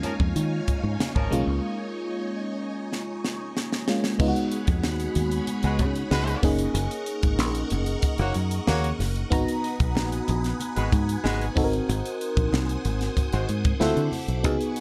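A crisp, up-front fusion drum kit drives this nocturnal, bittersweet slice of polished 1980s jazz-funk pop, its high-tuned snare and punchy kick ringing in an airy studio room at a straight 94 BPM in 4/4. Alongside it, a fingered electric bass sits equally forward with a bright, foam-muted punch, while a glassy FM electric piano with a bell-like attack and subtle chorus carries the accompaniment in G# dorian. Behind them, a vintage sawtooth string machine holds slow-blooming chords that swirl through ensemble chorus and phaser, and very quiet low-tuned congas add soft-handed warmth. A tight, distant horn section plays a jazz-style second line, briefly at the start and then returning at 5.6 seconds after a break that ends with a drum fill from 2.9 to 4.2 seconds. Harmonies move through suspended chords such as D#9sus4 and C#7sus4 into F#6 and G#m7, framed by light reverb and a dark overall production.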